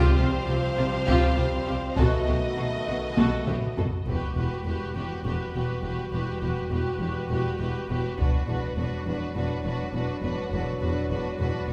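Hard-stick taiko drums dominate from 1.1 s in this relentless, heroic cinematic orchestral piece in 7/8 at 204 BPM, adding a fill at 3.2 s, while lush vibrato violin sections carry the melody and a second line over an expressive viola section with portamento. A mellow French horn section holds chords throughout, joined through the opening by bright trombones and a clear, distant string section. Soft-mallet timpani sound only briefly at the start, and up-front double basses with a rich, distant cello section anchor the bass as the music settles into E minor at 4.1 s, all set in a reverberant hall.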